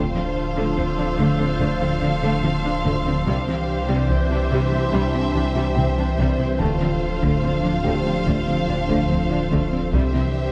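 Set in a moderate scoring-stage reverb, this relentless, futuristic build-up from a hybrid orchestral and electronic film score is cut from a longer piece. Lush bowed strings (expressive violins on a second line, focused violas in accompaniment, dark cellos and very quiet double basses in the low end) sit over a swirling, phased analog pad, a thick, saturated detuned saw bass and a soft, nasal pluck tracing arpeggios. A felt-muted upright piano with audible action noise and digital delay joins at 5.7 seconds, and a taiko ensemble with heavy sticks enters in the background at 6.6 seconds.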